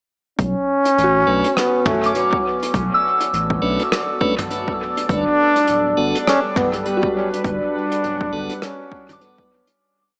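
Hazy and deep, this short ambient dub piece sways at 102 BPM in B minor with a swung 16th feel, moving from Bm9 to Gmaj9 at 5.1 seconds. An up-front mellow trombone with vibrato carries motif-based call phrases through dub echo. Beneath it sit a round sine sub bass, an overdriven, punchy electronic kick, and a dark, smooth brush kit whose closed hat, low tom and rim make a sparse echoing beat. A soft, pure FM synth bell drifts in two chorused loops of unequal length, and a piping, key-clicking tonewheel organ adds echoing stabs through a stopped rotary speaker. A detuned sawtooth pad fades in from 2.4 seconds with chorus and its own reverb. The mix sits in a moderate echo chamber with a small-speaker tone and fades out from 6.7 seconds.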